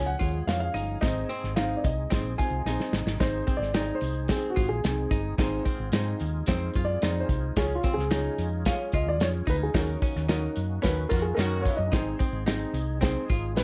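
A mellow baby grand piano carries the melody over a woody, slightly detuned upright piano, a round hollow-body bass, a clean, picked archtop guitar riff and a lightly overdriven tonewheel organ with slow rotary and chorus vibrato in the background, while an up-front soul drum kit and a jingly tambourine join at 0.2 seconds in this uptempo, uplifting 1960s-style soul excerpt. After a drum fill, the grand piano takes a solo from 3.2 seconds, and a band accent brings in a brief, tight horn section line with light vibrato and a smooth top at 11.1 seconds. The production is dark and warm, with audible piano action noise and light reverb.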